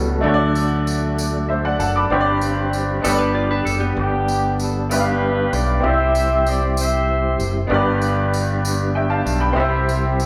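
A slow, uplifting gospel passage in 6/8 at 64 BPM opens with a brief touch of mellow horns over a woody, worn, slightly detuned upright piano, a soft, flute-like tonewheel organ with fast rotary speaker and chorus vibrato, and a bright fingered electric bass sitting direct and up front. A jingly, saturated tambourine enters at 0.6 seconds, and a clean, compressed electric guitar picks a second line from 3.0 seconds. At 4.0 seconds the horn section returns to carry the melody, vintage and jazz-styled with light vibrato. Underneath, the harmony moves from D through Gsus4 to G and C, giving the piece a soulful lift. The band plays live in one room with moderate large-studio reverb, and this is a short cut from a longer piece.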